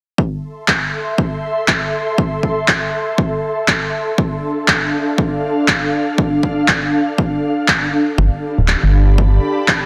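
A hollow, organ-like FM bass arrives late, from 8.2 to 9.4 seconds, with a dark, percussive attack that decays and is pumped by sidechain, giving this moody, deep house excerpt its weightiest moment. Throughout, an ethereal pad carries the piece: an airy, warbling, vintage blend of detuned triangle and sawtooth voices in unison, with slow attack, long release and a mellow, sustained glow thickened by ensemble chorus and its own reverb, also pumping against the sidechain. Underneath, a dry, punchy analog kick with a high-pass filter and dry, analog electronic handclaps sit up front at 120 BPM in 4/4, with a 61% swing on the 16ths. The harmony in A minor moves from Am to Dm7 at 3.9 seconds and then to G7 as the bass enters. A moderate, lush hall reverb and a dense, heavily limited modern master give the short cut from a longer piece a full, polished finish.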